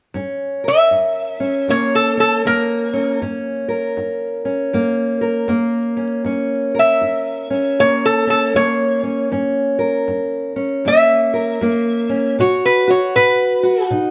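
A dark, woody fingerpicked steel-string acoustic guitar on old strings opens this soulful, laid-back acoustic country blues excerpt at 79 BPM in swung 4/4 and F# mixolydian, joined at 0.7 s by a bright, nasal lap resonator guitar played with slide and fingerpicks carrying the melody up front, while the harmony moves from F# to B5 at 12.4 s, all heard as a live duo in a moderately reverberant stone room beneath a layer of vinyl crackle.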